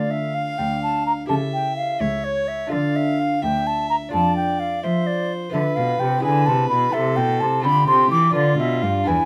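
A grave, flowing passage cut from a longer baroque-style sonata movement, set in 6/8 with a rubato give to its pulse. The violin carries the melody with a gut-string, reedy tone and light vibrato, while a wooden baroque flute above it plays a second line, airy and straight-toned with a crisp attack, sitting up front and louder than the violin. Beneath them, a fingerpicked lute supplies delicate accompaniment on doubled gut strings, some sounding in octaves. A bowed cello anchors the bass, its period-style voice also placed close and forward. All four play throughout the roughly nine seconds, moving through minor-key harmony that darkens toward a diminished chord at 8.3 seconds, captured by close, detailed microphones in a lightly reverberant space.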